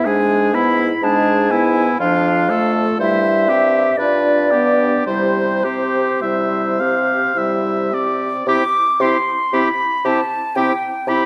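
This is a slow romantic movement for wind quintet in C major, cut from a longer piece, with a melancholic, solemn mood and a rubato 3/4 pulse between 52 and 62 BPM. The concert flute carries the melody up front with a pure, warm, straight, tongued tone, while the oboe sings a clear second line beside it. Underneath, the bright, vintage-tinged clarinet and the soft-attack French horn fill in the accompaniment, and a warm bassoon anchors the bass, with the oboe and bassoon both showing a light vibrato. The harmony moves from E7/G# through Dm/F, C/G and G7 to settle on C at 5.1 seconds, and the phrase shifts into a new section at 8.5 seconds before the excerpt closes near 11.3 seconds. A moderate recital hall reverb gives the ensemble an intimate, classical sense of space.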